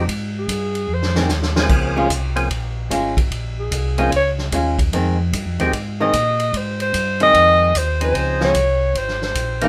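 A late-night, bluesy soul jazz organ trio groove in F minor swings at 149 BPM in 4/4, a short excerpt cut from a longer piece. A mellow alto saxophone carries the melody up front as a solo from the start, its subtone, vibrato and scooped notes giving a smooth, jazz-style top between Ab4 and Eb5. Beneath it, a fat, lightly overdriven tonewheel organ plays a percussive line with third harmonic percussion and key click through a slow rotary speaker, while a second, round and dark organ voice handles the bass, clean and close in the mix. A distant, roomy big-band drum kit with a boomy kick and medium-tuned snare swings on hi-hat, ride and crash, dropping a fill between 0.9 and 1.7 seconds, and a compressed, hollow-bodied archtop guitar joins with picked accompaniment at 1.2 seconds. The chords move from Fm7 to Bbm7, back to Fm7 and onto Dbmaj7, all set in a moderate studio reverb.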